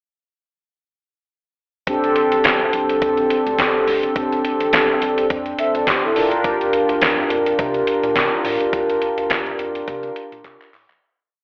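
This early-eighties boogie funk piece has a slick, late-night mood, moving at 105 BPM in 4/4 with a swung sixteenth-note feel. Everything begins at 1.9 seconds: a clean 12-bit drum machine plays a four-on-the-floor boogie beat with a thumpy kick, a fat snare layered with handclaps, and hi-hat, sitting up front with gated reverb and a tape-tinged, roomy character. Underneath, a rubbery square-wave bass sits in the background, playing a fat, syncopated boogie line with a bouncy filter pluck and a moving notch. Mellow synth brass, brassy and round with a soft attack and chorus, holds rootless chords up front and adds short fills, moving from F6/9 to C9sus4 at 6.2 seconds. The whole piece is a single verse with a light reverb and a telephone-like colour, and it begins fading at 8.7 seconds before closing on a drum fill.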